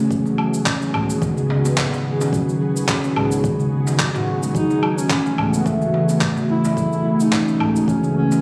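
Organic downtempo with a hypnotic, earthy mood at 108 BPM in F# dorian, where a ringing handpan plays arpeggios with tape echo over an ethereal, detuned pad with sidechain pumping, a round sub bass, a layered electronic kick, electronic cabasa, woodblock and handclaps, and a crisp darbuka in the background, until a mellow, up-front duduk enters at 4.6 s with vibrato and scooped notes as the chords move from G#m7/F# to F#m9, all heard as if captured on a phone in a reverberant recital hall.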